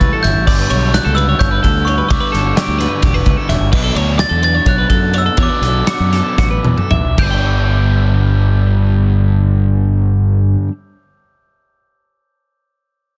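In a straight 7/8 at 219-259 BPM in eighths, this intricate, wistful math rock and midwest emo excerpt in G lydian slows from 3.7 seconds, with a drum fill at 6.4 before the loose, punchy indie kit with dark cymbals drops out at 7.3. A ringing, bell-like glockenspiel struck with hard plastic mallets carries the melody through tape echo, over twangy, bright clean twelve-string arpeggios, a double-tracked crunchy overdriven guitar riff and a growling, overdriven fingered bass placed up front. The sound is dry and dense, with a pumping room on the drums and a heavily limited modern master.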